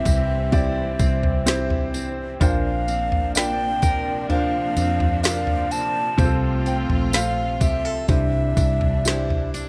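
An alto ocarina opens this emotional, hopeful pop ballad, its airy clay tone and crisp attack carrying the melody over a woody upright piano, a lush bowed string section and picked steel-string acoustic guitar arpeggios, all sounding from the first moment. Tape echo trails the ocarina's straight-toned phrases. At 0.1 s a dark, foam-muted fingered electric bass arrives with a round, punchy low end, joined by a smooth R&B drum kit with a soft kick, woody snare and toms, plus a jingly tambourine. The tempo is a slow 63 BPM in a straight 4/4, with the bright, full-bodied guitar tucked in the background and its finger squeaks audible, while the strings add close, vibrato-rich sustained chords. The harmony moves from C through Bbadd9 and F to Cadd9, and a small room ambience wraps the ensemble in a close, intimate space in this short cut from a longer piece.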